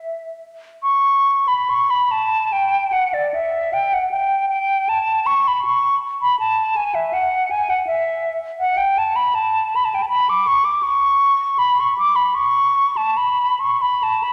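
Classical solo for unaccompanied concert flute, a yearning, lonely fragment of a longer work, moving freely in rubato through a triple metre. The flute plays alone from 0.0 to 14.3 seconds, ranging from D5 to D6 with a pure, hollow tone, vibrato and tongued notes. It is close-miked and sits up front, while a wet concert hall reverb blooms around it.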